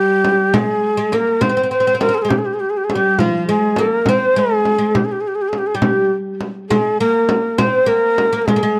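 A breathy, reedy ney carries the melody up front in this short cut from a longer Persian modal ensemble piece. Its end-blown cane tone has a soft attack, gently rolled-off highs and a trembling vibrato. Beneath it, a fretless oud plucked with a plectrum plays a second line in a lower register, its double strings sounding woody and deep, with tape echo trailing its notes. A small, bright frame drum, close and present in a small room, comes in at 0.2 seconds and plays until 8.6 seconds. The pace is slow at 68 BPM in a straight 6/8, tuned to A4 = 436 Hz, and the mood is soulful and full of longing. The sound is dry and intimate, in the manner of a 1970s studio recording, and the music moves into a new section at 6.7 seconds before the cut ends.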